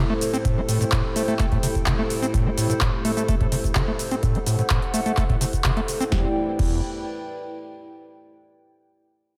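Raw and gritty, this short cut from a longer acid house track runs at 127 BPM in a straight 4/4 feel in E minor. A squelchy, resonant acid bass with a saturated, overdriven edge and a filter sweep plays the riff, its delay trailing behind. Alongside it, a dark analog pad holds moody, detuned sustained chords over Am7, while a warbling, lo-fi tape-like pad adds a nostalgic, mellow texture through chorus, phaser and its own reverb, both pumping with the sidechain alongside the bass. A punchy, dry analog drum machine brings overdriven snare, handclaps, hi-hat, shaker and crash, and a deep, tape-warm electronic kick joins at 0.5 seconds. At 6.1 seconds the harmony moves to Em7 and a very quiet, round analog bass sounds a low E under the mix, all set in light reverb.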